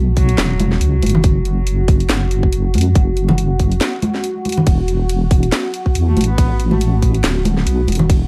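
This short excerpt has a dry sound with little reverb and a layer of vinyl crackle over it, setting a cavernous, dark mood for deep dubstep at 140 BPM in F# minor, felt in half-time with a swung sixteenth-note groove. A deep, soft wobble bass sits up front from the first moment, its detuned sawtooth and sine tones thickened by chorus and tube saturation. Above it, a moody, full-bodied analog pad sustains chords with a slow attack and a sub octave, moving from F#5 to Esus4 at 4.7 seconds. A tight, layered electronic kick punches through at 0.2 seconds alongside a garage kit of cracking snare, handclaps, hi-hat and ride cymbal. Bright congas struck with hard hands join at 0.6 seconds, and a clear, smooth bowed cello with vibrato sings two brief phrases, one at the start and another around 6.1 seconds, trailed by dub echo.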